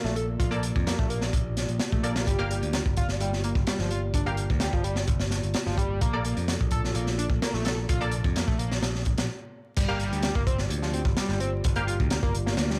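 A crunchy, saturated breakbeat kit with a high-tuned snare, tight kick and dark cymbals drives this gritty, energetic 128 BPM breakbeat cut in G minor, with a growly, punchy picked electric bass underneath and vinyl crackle over a light studio reverb. A screaming, guitar-like overdriven synth lead plays a riff with distortion, delay and vibrato under a filter sweep until 9.8 seconds, while bold orchestra-hit-like stabs with built-in reverb and delay punctuate the groove. A dark, moody analog pad sits in the background holding chorused chords with sidechain pumping, moving between Bbmaj7 and Gm7 until a short break at 9.3 seconds gives way to the drop.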